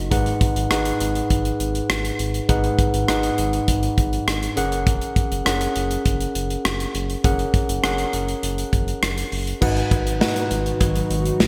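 A punchy, up-front studio drum kit with bright cymbals and a gated reverb on its kick, snare, rim clicks, hi-hat and crash drives this urgent, dramatic 1980s-style pop excerpt, over a mellow tine electric piano voicing the chords and a round, deep analog bass. At 9.6 s the harmony shifts and a close, dry cowbell slips in very quietly, and at 10.7 s a dark, shimmering pad with chorus fades into the background just before the cut. The whole mix sits in a lush hall reverb with a bright, digital 1980s production sheen.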